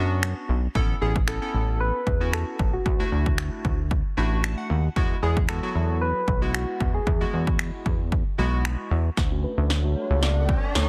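Detuned, chorused analog keys and a glossy pulse-width synth bass open this euphoric, summery dance-pop excerpt at 114 BPM, both pumping against the beat, while a punchy, tape-toned drum machine of kick, snare with soft clipping and finger snaps sits up front beside the bass. At 1.0 seconds a gentle, keys-like FM lead arrives, shimmering with chorus, phaser and digital delay, over a Bmadd9, Aadd9, Dadd9, Eadd9 progression, with a keys fill along the way. From 9.2 seconds a build-up brings a drum fill, a filter sweep and a very quiet, airy flute section on a Dmaj7 chord, joined at 9.9 seconds by an electronic riser, all in a dense, heavily limited, nearly dry mix.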